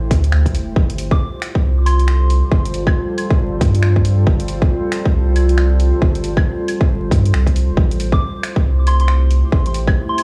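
A round, mellow dub sub bass sits up front with transformer saturation and sidechain pumping, anchoring this wistful, nocturnal future garage passage at 137 BPM with a 61% swing on the sixteenths, drifting from Am7 to G9sus4 and back. A tight, layered electronic kick and a gritty garage kit of claves, finger snaps and warm hi-hats carry 12-bit sampler texture and studio reverb, while a deep, detuned ambient pad breathes with chorus and pumping beneath. A pure FM bell with phaser and analog delay chimes in at 1.1 s and returns at 8.1 s, all within a dry, crackling hardware sound cut from a longer piece.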